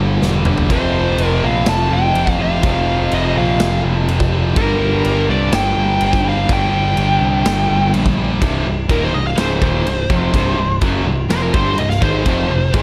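Three riffing electric guitars (a cranked, double-tracked stack with overdrive, a crunchy one with harmonic tremolo and a scooped high-gain one with distortion) open this driving, menacing hard rock excerpt in C minor at 124 BPM alongside a punchy, bright picked bass, before a big rock drum kit with natural big-room crash cymbals, snare, kick and toms enters with a fill at 0.2 seconds and a dark, smooth overdriven lead guitar with analog delay joins at 0.7 seconds, taking a solo from 8.4 seconds over a Cm chord, all set in light reverb and small room ambience.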